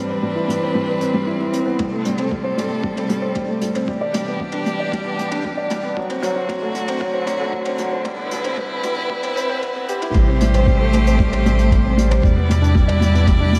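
Piano-and-strings electronica at 115 BPM in A dorian, moving and hypnotic, opening with a felt-muted upright piano riff, intimate and boxy with audible action noise under a diffuse ambient delay, over sustained chords from a bowed string quartet whose vibrato and portamento carry a sidechain pump. Distant brushed hi-hat and toms drift in at 0.5 seconds and a muffled, overdriven electronic kick thumps in from 1.8 seconds as a filter sweep builds through a Cmaj9, Am7, Em7, D7 progression. At 10.1 seconds the drop lands with a deep, round analog bass, pumping beneath the dreamy, reverb-soaked hall sound of this short excerpt.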